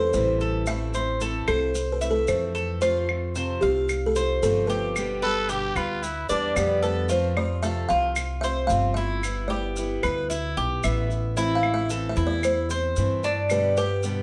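A buzzing kalimba carries the melody with a soft, hollow, fingertip-plucked tone in this sunny, relaxed excerpt of Cuban son and guajira, moving at 112 BPM in a straight 4/4 over a C, Am, F and G progression. Up front, a metallic, double-strung tres plays arpeggios, and a thumpy pizzicato upright bass anchors the low end, while a picked parlour-style steel-string acoustic guitar adds quieter accompaniment. Grainy, vintage maracas join woody claves that sit in the background, and a raspy, growling trumpet with light vibrato steps forward for a short second line from 5.2 to 7.1 seconds, all within a moderate studio reverb.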